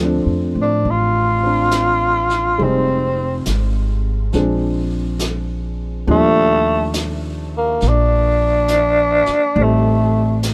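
Intimate and tender, this swung jazz ballad, cut from a longer piece, drifts at 69 BPM as a warm baby grand piano and a woody pizzicato upright bass lay out Dm7, Fm7, Bb7 and Ebmaj9. A breathy, growling tenor saxophone with vibrato and scooped notes enters up front at 0.6 seconds, and a distant, roomy brush kit with a rolled-off top joins at 0.8 seconds, with little reverb on the recording.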